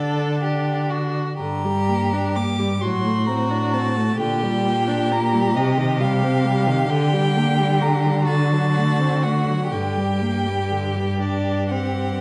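In a 6/8 with uneven, rubato beats, this slow, romantic string quartet movement unfolds with a yearning, solemn mood across a 12.2-second passage cut from a longer piece. The first violin carries the melody high and clear, its bowed line smooth and even with vibrato. Beneath it, the second violin plays a rich, focused inner line, while the viola supplies a close, even accompaniment in its lower register. The cello anchors the bass up front, bowed with a smooth vibrato. The harmony moves through G minor and closes on an open G chord, heard in the reverberant air of a recital hall with a dark, warm production.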